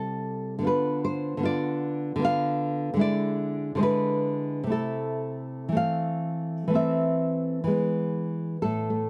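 Close, detailed microphones and a light reverb put a single nylon-string guitar up front, its fresh strings giving a full-bodied, acoustic tone. This brief, romantic piece for solo classical guitar moves in triple metre, stretched and pulled by a rubato feel. The thumb-plucked playing spans a range from A2 up to F5, carrying a melancholic, wistful mood throughout the 9.1 seconds. The harmony drifts from C through a diminished chord and an E7 over D into A minor, then arrives on E at 7.7 seconds, in a fragment cut from a longer work.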